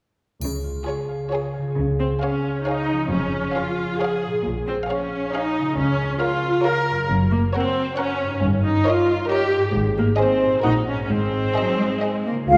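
Harp arpeggios with a mellow, ringing tone open this playful, whimsical film cue in Db major at 135 BPM in 3/4, over bowed cellos and double basses and a brief, dry triangle shimmer at 0.4 s. From 0.9 s the violin sections carry a vibrato-rich melody and a second line in the background, while the focused violas sit up front with the accompaniment, all in a mischievous, magical mood heard from further back in a reverberant concert hall. At 12.5 s an airy, bright flute note and a dark, tight French horn chord arrive just as this cut from a longer piece ends.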